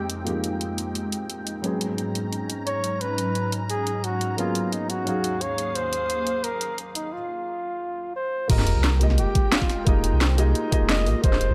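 A lush, melancholic stretch of liquid drum and bass at 175 BPM in F phrygian, set in light digital ambience, where a soft, thick-felt upright piano and a glassy, ethereal FM pad with ensemble chorus and sidechain pumping carry chords from Fm11 through Abm11 and Ebm11 while a filter sweep runs over the pad. An overdriven kit with a cracking snare and bright hats sits up front, and from 2.7 seconds a mellow, up-front flugelhorn with light vibrato and scooped notes sings a jazz-style solo line through dub echo. After a break from 7.1 seconds, the drop at 8.5 seconds brings in a round sine sub bass, a knocking overdriven kick and a very quiet sub-drop impact as the harmony returns to Fm11.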